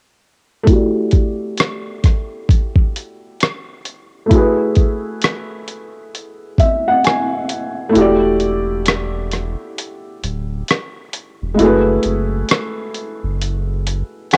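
Nostalgic and reflective, this lo-fi hip hop piece at 66 BPM with a swung 4/4 feel pairs a muted, boxy felt piano with audible action noise, cassette tape haze, a filter sweep and brief fills over Em11 and F#m11 chords, against an up-front, gritty, overdriven sampler-style drum kit of hi-hat, thumpy kick and rim click, until the kick drops out at 7.9 seconds and a round, deep dub sub bass enters at 8.0 seconds, the whole set in the light reverb of a home cassette recording.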